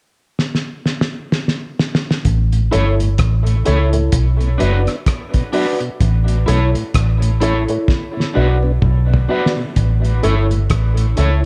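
A dark, round, foam-muted electric bass sits up front in this heavy, deep dub reggae excerpt, entering at 2.3 seconds in a low register over chords that alternate between A and Bm. A cloth-damped drum kit opens alone with a fill at 0.4 seconds, its fat snare, tight kick, rim clicks, hi-hat and toms sounding muffled, gritty and rolled-off, with a second fill arriving at 7.9 seconds. A dark upright piano supplies woody, boxy stabs with audible action noise and long sustain. An electric guitar at the edge of break-up adds twangy picked accompaniment with harmonic tremolo. A mellow tonewheel organ with key click and slow rotary speaker sits in the background. Dub echo trails the organ, guitar and piano across a swung, echo-heavy mix with a small room ambience.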